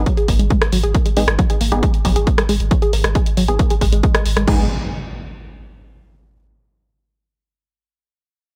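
An overdriven, layered electronic kick drives this relentless, dark peak-time techno excerpt at 136 BPM in G# minor, pushing up front over a saturated, deep sub bass, a tight detuned sequenced synth riff with chorus, phaser and cassette-tape colour, and punchy analog drum-machine crash, hi-hat and rim clicks, while aggressive, bright ring-modulated rave stabs enter at 1.2 seconds before an electronic impact arrives at 4.6 seconds, all in a dry mix.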